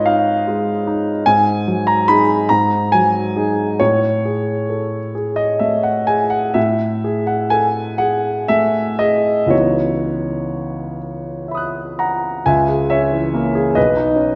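A lone high G# on a concert grand piano opens this hazy, wistful fragment of impressionist classical music, unfolding slowly and freely in 6/8. The solo piano sounds warm and natural, sitting up front with a deep bass that reaches down to B1, and its harmonies drift through Amaj7 at 3.8 seconds and C#m11 before a new section begins at 12.5 seconds with C#m6 and Badd9. A wet scoring-stage reverb lingers around the instrument, giving the music a spacious haze.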